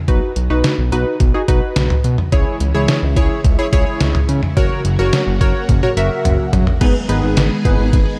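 A detuned 8-bit digital drum machine sits up front in this cool, driving synth-pop excerpt at 107 BPM in G# minor, its thumpy kick, medium-tuned snare, hi-hat, cowbell, toms and crash carrying a tape-warm, small-room character, with a drum fill from 5.7 to 6.8 seconds. Alongside it, a fat, saturated analog sawtooth bass with a filter pluck and a punchy, funky polysynth comp with chorus, filter sweep and shimmer reverb move through B, C#m, F# and G#m. A swirling, vintage phased string machine enters at 2.3 seconds in the background, its bright, ensemble-chorused chords set against the dark production and light digital ambience.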